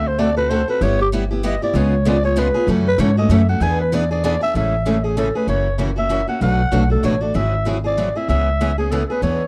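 The sound is dry and close, like a 1970s studio session in a small room, with everything heard at intimate range. This swinging, charming piece of jazz manouche moves briskly at 193 BPM in 3/4 with a loose swing, centred in A major and cut from a longer performance. A growling clarinet carries the melody up front, its mellow core roughened by a raspy, gritty edge, vibrato and scooped notes, taking a solo through the opening 4.5 seconds. Beneath it, a pizzicato upright bass on gut strings sounds woody, dark and thumpy, while a warm picked parlour guitar holds the accompaniment from the start. A second parlour guitar, bright and boxy and set further back, joins at 0.8 seconds. The harmony runs through rich seventh chords such as D7, F#m7, Amaj7 and a G#aug7 before arriving at C#m7.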